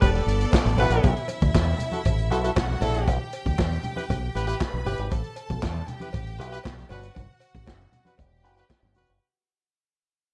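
Driving and glamorous, this dry disco excerpt opens on a full-band accent before fading out from 1.0 seconds, with a muffled, punchy vintage drum kit of kick, snare, hi-hat and handclaps, a bright fingered electric bass run through an envelope filter, warm horn stabs carrying slapback echo, a lush, biting string section on a second line, and very quiet congas and a metallic cowbell in the background, all over a chord move from Em11 through B7sus4, Em/B and Asus2 to G5.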